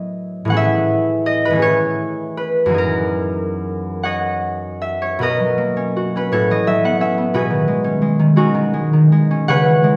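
A solo concert harp, up front and ringing, plays a peaceful, graceful classical passage in 6/8 with free, rubato timing, cut from a longer piece. Its fingerpicked, acoustic tone spans F#2 to F#5 over extended chords such as Bmaj7/A, Amaj7 and F#13, then moves near 5.2 seconds to Bmaj9, A69 and B69. A wet recital hall reverb gives the harp a spacious setting.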